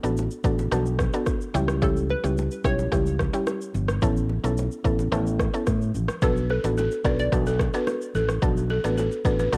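A hollow, warbling square-wave pluck carries the melody from 1.8 to 8.1 seconds, its chorus and tape echo giving it a vintage, bouncy feel over a woody, round mallet-like synth pluck that plays the accompaniment up front through chords of Bm7, C#dim and Aadd9. This smooth, mellow afrobeats excerpt in B minor moves at 109 BPM in a straight 4/4. A fingered electric bass sits direct and amped beneath an electronic afro-pop kit of deep kick, rim click and shaker, with very quiet, bright bongos and congas, and a dry, buzzing balafon riff arrives at 6.2 seconds, all colored by the cassette tape character of a home recording.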